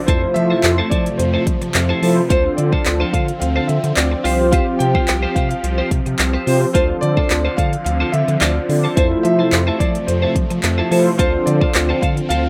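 This rough home-demo mix sits in a moderate studio reverb and presents a confident, driving dance-pop fragment at 108 BPM in straight 4/4, in D minor. A deep house drum kit sits up front, with its deep kick, woody snare, smooth hi-hat and handclaps layered into a produced electronic sound. Beneath it, a round analog bass with a dark, sine-like tone and sidechain pumping anchors the low end. A filtered supersaw swell holds evolving, detuned chords with a soft attack and moving notch, while mellow synth brass adds brassy sawtooth accompaniment with chorus and vibrato, both parts pumping from the sidechain. A clean, twangy twelve-string electric guitar picks a bright riff with subtle chorus, and a warm grand piano carries the melody through delay over chords that move from Fmaj7 through Dm7 and Csus4 before returning to Dm7, Fmaj7 and Dm7.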